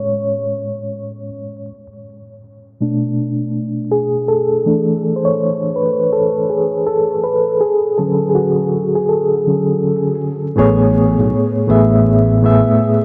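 Lo-fi hip hop with a nostalgic, mellow mood, this short fragment of a longer piece moves at an unhurried pace with a swung sixteenth-note feel. A reedy electric piano sits up front, clean and played through its built-in speakers with a fast tremolo, carrying the piece alone from 0.0 to 10.6 seconds across chords of Amaj7, Bm7, E7sus4 and Dmaj7 while a filter sweep runs over that stretch. At 10.6 seconds the harmony returns to Amaj7 and a sustaining fretless electric bass enters, growly, direct and amped, holding low notes until 12.6 seconds. The piano continues to the close at 13.0 seconds. The whole mix is dreamy and soaked in a huge ambient reverb, dusted with vinyl crackle and softened by a low-pass filter.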